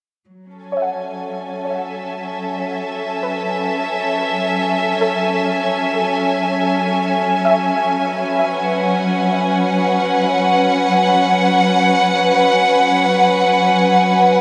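Floating in free time, this short ambient excerpt from a longer piece feels spacious and reflective. A studio string section holds sustained chords from 0.3 to 14.4 seconds, fading in with soft-attack bowing, vibrato and a sul tasto touch that keeps its smooth top intimate and close at the front of the mix. From 0.7 to 9.0 seconds, a soft, round synth pluck traces gentle arpeggios high in the background. Its dark, decaying tone blends sine, triangle and sawtooth waves with a noise layer and a filter sweep, softened further by ensemble chorus and a diffuse ambient delay. The pluck also fades in, and the whole recording sits in a huge, wet reverb with an 8.1-second tail that lets each sound hang in the air.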